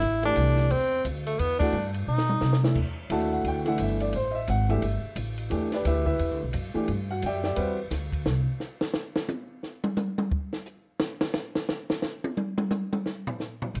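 A swinging 4/4 pulse drives this moody, late-night small-group jazz excerpt, where a bright, punchy tenor saxophone states a forceful vibrato line for its first 2.6 seconds over woody pizzicato upright bass, clear open grand piano comping and a dry compact cocktail kit with dark cymbals and a high-tuned snare. A band accent lands at 1.6 seconds, and a drum fill then leads into a section that ends with a drum solo from 8.3 seconds, the bass returning briefly at 13.7 seconds, all in a moderate studio reverb.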